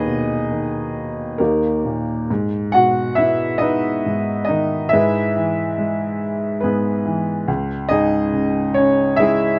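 A lone baby grand piano opens on a G-sharp minor chord over D-sharp in the bass, setting a dark, wistful mood for this short passage of lyrical classical solo piano. At 69 BPM in 3/4 with a rubato feel, the harmony moves through D-sharp and back to G-sharp minor, then to E over G-sharp at 4.9 seconds and C-sharp minor at 7.5 seconds. The piano ranges from C#2 to F#5 and sits up front, its open, warm tone carrying a long sustain. A moderate studio ambience surrounds it, and the production has a shadowed, mellow cast. Tuned to A4 = 438 Hz, the passage runs about 9.6 seconds and is cut from a longer piece.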